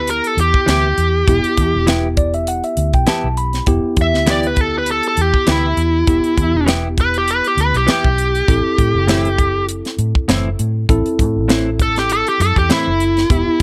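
Straight-eighth soul blues in E minor at 100 BPM, smoky and brooding, this excerpt features a smooth, overdriven lead guitar soloing up front across the whole 13.6 seconds over a worn, slightly out-of-tune tine electric piano that adds a fill from 1.9 to 3.7 seconds. A dark, round, foam-muted vintage bass and a tight, dry funk kit with a high-tuned snare anchor the groove, while a bright, compressed clean guitar recorded direct plays stabs from 0.7 to 12.9 seconds. The harmony moves from Em to Am at 8.5 seconds, all set in light reverb.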